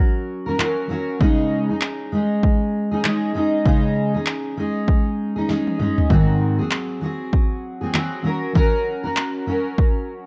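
A dark, warm production with little reverb frames this short cut from a longer acoustic pop piece, sunny and heartfelt in mood, moving at 98 BPM in 4/4 with a swung sixteenth-note feel. A fingerpicked steel-string jumbo acoustic guitar opens at 0.0 seconds. It is double-tracked, warm and full-bodied, with the freshness of new strings, and it sits up front as the accompaniment. A punchy analog drum machine joins at 0.6 seconds, also up front and overdriven, its punchy kick and snare carrying an electronic bite alongside handclaps and toms. The harmony moves from Gb to Dbsus2 at 1.2 seconds, and a drum fill from 5.5 to 6.1 seconds leads into Ab7 before the progression settles back on Gb at 8.2 seconds.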